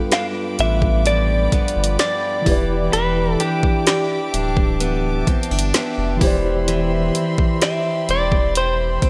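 This short excerpt from a longer piece has a soft, late-night sheen, with light reverb and a digital ambience around a moody contemporary R&B groove at 64 BPM in 4/4. A mellow tine electric piano and a bright, full-bodied picked steel-string acoustic guitar, its arpeggios trailed by delay, open alongside a dark, bowed string section holding sustained chords with light vibrato. A faint, round pluck colored by chorus and delay sits in the background until about 6.6 seconds. A clean, direct-recorded electric guitar carries the compressed, scooped melody through delay, while a smooth, tape-warm, up-front drum kit with a knocking kick, woody snare and warm hi-hats anchors the pulse. A deep, rounded sine sub bass arrives at 0.6 seconds, and the harmony moves from G7 to Em7 and on to Cmaj7 over E.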